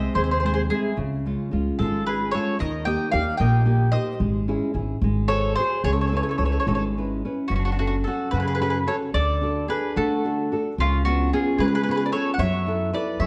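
Passionate and romantic, this Italian folk serenade unfolds in 6/8 with a free, rubato feel. A picked mandolin carries the melody up front, its doubled strings giving a round tone, while a second mandolin, set further back, traces a supporting line beneath it. A classical nylon-string guitar fingerpicks the accompaniment close to the listener, and a pizzicato upright bass on gut strings adds a woody, thumpy low end. All four play throughout this passage from a longer piece, and from 7.5 s the chords move from F#m through D and C#7, reaching F#m7 at 12.4 s. The production is dark and warm, placed in a moderate recital hall reverb.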